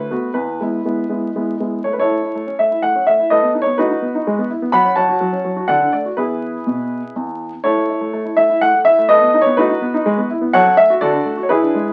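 An intimate grand piano sits up front, its action noise audible, playing a cheerful, elegant classical-period sonatina in A major, in 3/4 at 124 BPM and tuned a touch low to A4 = 438 Hz. Alone across its range from D2 to B5, the piano moves through a progression from A to B7/A, E/G#, F#m and D, a phrase that returns from 7.6 seconds. A wet studio reverb and the crackle and dulled top end of a very old 78 rpm record give this short fragment of a longer piece an antique glow.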